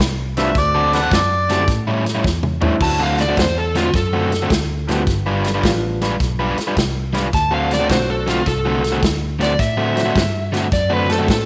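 A swung shuffle drives this gritty, soulful electric blues excerpt, with a tight-kicked acoustic drum kit up front, a round, foam-muted fingered bass and a crunchy overdriven picked guitar riff underneath, a clear grand piano in the background, and a brief scooped, tongue-slapped amplified harmonica line at 0.4 seconds, before a drum fill at 2.2 seconds leads into an overdriven slide guitar solo from 2.8 seconds, all in a small room with echo-chamber reverb.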